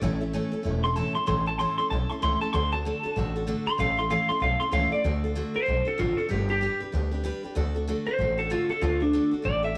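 Rockabilly with a rowdy, upbeat swing, cut from a longer piece, built on a full-bodied picked dreadnought acoustic guitar with audible finger squeak and a woody, thumpy upright bass on gut strings. An electric guitar through a small old amp enters at 0.8 seconds carrying the melody, its twangy, slightly broken-up tone trailed by tape echo and sitting just ahead of the others. The sound is close and up front, touched with light studio reverb, and the chords move from A to D and on to G over the short stretch.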